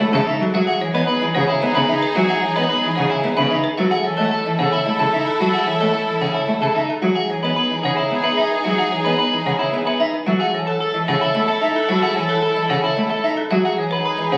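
Captured on a phone in the room, this recording carries the wet bloom of a recital hall along with a club-like reverb. It is a piece of minimalist classical pattern music in F# dorian, moving at 111 BPM in a straight 3/4, with a hypnotic yet urgent mood, cut from a longer work. A folk marimba struck with hard mallets carries the melody in a woody, rustic, percussive voice, while a present oboe with light vibrato adds a second line in classical style. Up front, a single bowed cello supplies focused accompaniment, and a studio string section holds smooth, even chords beneath. An electric guitar at the edge of break-up picks twangy, scooped arpeggios, joined from 0.1 s by a hollow concert flute tonguing arpeggios of its own in the background. After a brief opening F#m7, the harmony rocks between Emaj9 and F#m9 through the rest of the 14.4 seconds, keeping the pattern circling.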